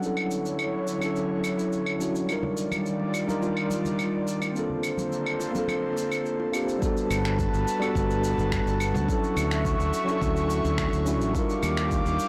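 Sunny and warm, this sunset chillout excerpt moves at an easy 106 BPM in a straight 4/4, drifting through lush major-ninth chords from Dmaj9 to Ebmaj9 and Bbmaj9, then Gmaj9 before returning. Up front, a clean tine electric piano plays the accompaniment through built-in speakers with a digital delay, while an airy, breathy pad carries sustained chords with chorus, its detuned sawtooth and triangle tones layered with noise and shaped by a slow attack and long release. Layered electronic cabasa, claves and finger snaps with a tape-like, small-room character run throughout, the snare touched by soft clipping, and ringing acoustic congas and bongos played with soft hands sit in the background from 2.4 to 6.5 seconds. At 6.8 seconds a deep, produced electronic kick drum arrives, and a direct fretless electric bass follows at 7.1 seconds to round out the low end. A moderate plate reverb adds a lingering tail, while the whole recording is blown out and overdriven.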